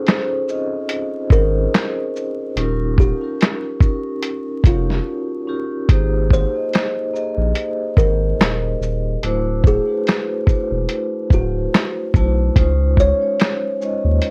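Lo-fi hip hop at 72 BPM in Ab major with a cosy, mellow feel, where a woody, thumbnail-plucked kalimba carries the melody over a ringing soft-mallet vibraphone accompaniment with motor vibrato and cassette tape grain, while a muffled, compressed sampler-style kit of thumpy kick, snare, handclaps, shaker and hi-hat sits up front and a deep, saturated sub bass joins at 1.3 s; after a brief break at 5.1 s the harmony moves from Bbm11 and Eb7 into Abmaj9, D9 and Dbmaj9, with the mix steeped in warbling old tape, vinyl crackle and moderate studio reverb.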